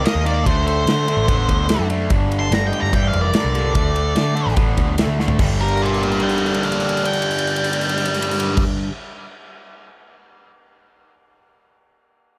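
A straight 4/4 groove at 146 BPM drives this heavy, gritty excerpt of blues rock power-trio playing with a southern rock edge, set in G minor and tuned slightly low to A4 = 438 Hz. A big acoustic rock kit with a punchy kick, a medium-tuned snare, crash and ride cymbals and toms anchors the feel, while a vintage electric bass, foam-muted and round through its amp, holds the low end. Up front, a bright, double-tracked crunchy guitar plays the riff, and a dark octave-fuzz lead carries the melody, with a warm, bluesy distorted lead tracing a second line in the background. The harmony moves from D7 to Gm and D5 before settling on Gm7, and a drum fill at 5.2 seconds leads into a new section. Studio reverb surrounds the band, and the drums ring on alone after the other parts stop, continuing until 10.1 seconds.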